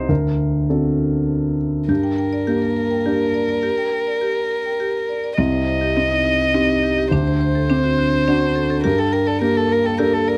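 In a rubato 3/4 at 104 BPM, this reflective, longing neoclassical piece in G harmonic minor opens with a dark, mellow baby grand piano alone, its long-sustained accompaniment sitting up front, before an intimate solo violin joins at 1.9 seconds with a soft attack, light vibrato and an airy sul tasto melody, while a bright, woody marimba struck with hard mallets adds arpeggios in the background, the whole heard as a close 1970s-style studio recording with light reverb, moving from D7 through Gm, Cm and D7 to a final Gmadd9.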